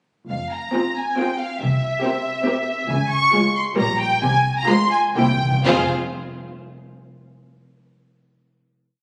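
A quick, dramatic classical-period movement for symphony orchestra in a rubato three-four, brief and urgent, with the violin section carrying a smooth, lush melody up front over a viola section offering pizzicato and sustained chords, a second violin line set in the background, and cellos and double basses grounding the harmony. The cellos bring a soft attack and expressive portamento while the double basses double the bass line, and the music slows from 2.3 seconds as it moves through its minor-key progression. Close, round timpani played with soft mallets enter at 5.2 seconds with a fill into a final chord, all heard in a moderate stage reverb with a phone-captured room ambience and compression.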